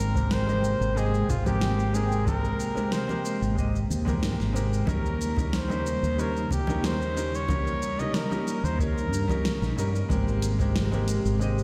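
Sunset chillout with a sunny, smooth mood, this short clip is cut from a longer piece and moves in a straight, unhurried four. A clear flugelhorn carries the melody in a classical style, soaked in tape echo, and stops at 9.7 seconds while the rest of the band plays on. A bright, brilliant concert grand piano supplies the accompaniment with deep bass and a filter sweep running across the whole clip, while an airy, breathy pad with a slow attack and long release holds chorused chords in the background. Up front, a round, punchy fretless electric bass sits dark and mellow under an ensemble chorus, anchoring the move from Abmaj9 to Eb7 and back. At 0.2 seconds a tape-warm deep house kit with a fat snare, hi-hat and shaker enters together with a deep analog electronic kick, and close, ringing congas sit quietly behind them. A lush hall reverb and the echo of a bare stone room give the sound a spacious, glowing air.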